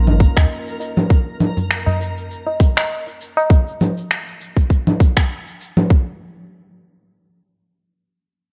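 A dark, lightly reverberant production frames this meditative, organic downtempo excerpt at 100 BPM in 4/4, with a gentle swing on the sixteenths. A round, deep sine sub bass pumps briefly beneath a twinkling FM granular texture with an octave-up shimmer, the bass stopping at half a second and the texture by 1.1 seconds. An overdriven electronic kick sits tight and up front alongside overdriven electronic congas, cabasa and finger snaps, while a high-tuned, short-ringing acoustic tabla, close and dry, plays until 3.5 seconds.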